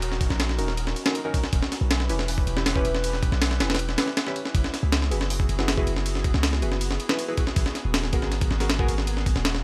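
Drum and bass with a jungle edge at 159 BPM, this frenetic yet atmospheric passage, cut from a longer piece, is driven by a gritty, pitched-up breakbeat kit with a thumpy kick, medium-tuned snare, hi-hat and ride sitting up front in studio reverb, over a deep, sine-like 808-style bass whose long notes decay. A warbling, nostalgic lo-fi pad holds sustained chords in the background through chorus and its own reverb, moving from Ebm7 through Em6 and Gb9sus4 to Abm9, while soft, nasal chord stabs with a dark filter sweep enter at 0.6 seconds, carrying chorus and dub echo. A very quiet electronic downlifter opens the passage and ends at 1.5 seconds, and the overall mix stays fairly dry.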